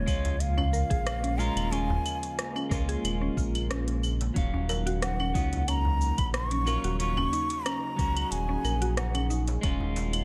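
Hypnotic organic downtempo, cut from a longer piece, where a breathy bamboo bansuri carries the melody with vibrato and an unsteady, tongued tone, trailed by delay. Beneath it, a dark, picked clean electric guitar with spring reverb and tape echo and a warbling, nostalgic lo-fi pad sitting in the background both breathe with sidechain pumping, as does the round, up-front analog bass, while a woody FM mallet-like pluck spins chorused arpeggios with tape echo. A deep electronic kick and a crisp electronic kit of claves, hi-hat, rim click and shaker, both re-recorded in a large room, drive the groove alongside a saturated metal-shell darbuka.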